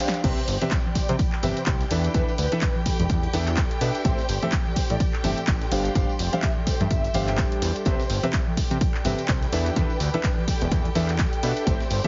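Piano house with an uplifting, feel-good mood, heard in a short cut from a longer piece, where a drum fill opens the first moment before the groove settles into a swung pulse. An up-front electronic kick, tape-warm and re-recorded in a large room, anchors the beat alongside a punchy analog drum machine with crash, handclaps, hi-hat and snare, while a gritty, very quiet sampler-style breakbeat kit adds hi-hat and a high-tuned snare, and compressed, saturated tambourine and congas sit in the background. A clear, vintage-toned concert grand piano carries the riff with deep low notes, pumping against the kick and trailed by delay, as a fat, detuned sawtooth bass enters at 0.2 seconds with a filter sweep and decaying notes. Behind them, a rich studio violin section holds soft-attack chords with vibrato, and an ethereal, airy pad adds chorused, reverberant sustained texture, both breathing with sidechain pumping. 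A breathy, flute-like synth lead with a warbling vintage character and chorus and delay traces a soft melody in the background over chords moving from Cmaj7 through E7sus4, Am7 and G7sus4. The whole mix carries a heavily compressed, radio-like sound with the top end rolled off.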